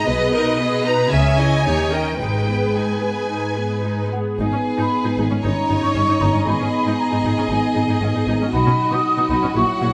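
A mellow, pure-toned flute section stands out in this cheerful, graceful classical excerpt, entering at 4.1 seconds with an expressive second line, and a tight French horn section joins at 4.4 seconds with sustained chords. From the start, a distant, lush violin section carries the melody over a focused second violin line and intense violas, while smooth, even cellos and distant double basses hold the bass. The orchestra sits in a moderate concert hall reverb, its minor-key harmony turning to a major chord near the close.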